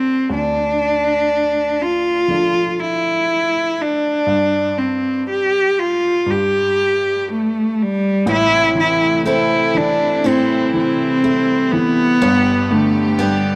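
Closely miked with fine detail and a light touch of reverb, this hopeful, tender acoustic folk-pop ballad fragment opens with a smooth, up-front solo bowed cello singing the melody with vibrato over a woody, polished upright piano whose notes decay quickly. At 8.3 seconds a picked, boxy steel-string acoustic guitar joins with arpeggios. At the same moment a distant chamber string section enters with sustained chords, its gut-string, reedy period-style tone carrying light vibrato and adding a warm bed beneath the cello.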